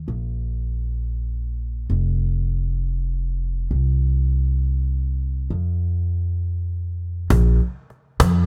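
Indie folk in a straight 6/8, this short fragment from a longer piece has a warm, hopeful mood and an arrangement that begins to build. An upright bass carries the opening alone from 0.0 seconds, its pizzicato steel strings sounding woody and sitting up front in the low register. At 7.3 seconds a cajon joins, close and dry, with faint snares beneath its woody acoustic tone, and it drops out at 8.3 seconds. The bass continues to the end of the clip at 8.5 seconds. A small room ambience lends the sparse pairing an intimate, natural setting.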